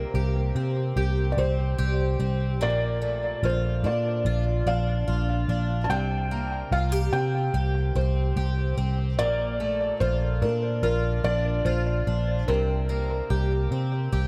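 Ethereal and dreamy, this short dream pop excerpt drifts at an unhurried pace in a straight 4/4, cut from a longer piece. A felt-muted upright piano carries the melody throughout, its tone soft and mellow with thick felt and audible action noise giving it an intimate, close character, touched by analog delay. Beneath it, a fingerpicked twelve-string acoustic guitar plays arpeggios with a boxy, octave-doubled shimmer, finger squeaks and a hint of swing, colored by analog chorus and delay. A vintage muted picked electric bass sits up front in the mix, dark, amped, round and foam-muted. The harmony alternates between C5 and Bbmaj7, and the echo-heavy mix, with light reverb and small room ambience, wraps the parts in a hazy, floating atmosphere.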